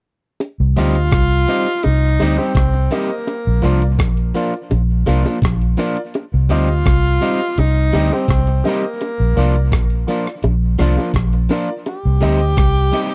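A breathy tenor saxophone with light vibrato carries the solo melody through this roots reggae excerpt, its pop-style phrases trailed by tape echo. Beneath it, a serious yet laid-back groove rests on a round, foam-muted electric bass, amped and up front, alongside a gritty, compressed sampler-style drum kit with a thumpy kick, hi-hat and rim click. Tight, high-tuned bongos played with soft hands add close acoustic detail until they drop away at 12.0 seconds. A bright, twangy picked guitar on the edge of break-up, also fed through tape echo, fills in the accompaniment, while a dark, mellow baby grand piano adds stabs with long sustain. The harmony rocks back and forth between two chords, and the whole excerpt has the dry, close sound of a 1970s-style studio recording.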